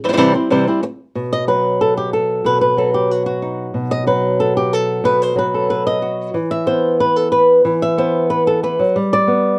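Intense and dramatic, this short flamenco passage cut from a longer piece moves at 185 BPM in 4/4 with a straight feel, set in B phrygian dominant. A single fingerpicked acoustic flamenco guitar carries the whole 9.6 seconds up front, ranging from B2 to E5 with a warm tone, as its chords move from C to B at 1.2 seconds, then E5 at 6.3 seconds and G at 9.0 seconds. The sound sits in a moderate studio reverb and carries the worn, warbling character of old cassette tape, with a warbly drift in pitch.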